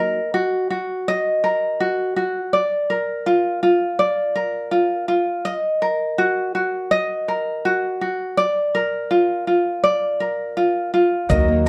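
A straight 4/4 pulse at 82 BPM carries this tender, reflective acoustic pop excerpt in Eb harmonic minor, its harmony moving between Ebm and Bb. A light, up-front tenor ukulele, fingerpicked and warm, holds the accompaniment on its own for nearly the whole passage. A dark, woody archtop guitar with old strings sounds only in a brief fingerpicked flicker at the very start, then returns with arpeggios at 11.3 seconds. At that moment a mellow, felt-muted upright piano with audible action noise, a growly pizzicato upright bass on steel strings, and a gritty, compressed sampler-style shaker with a thumpy kick all join in. A light reverb lends the recording a gentle sense of space.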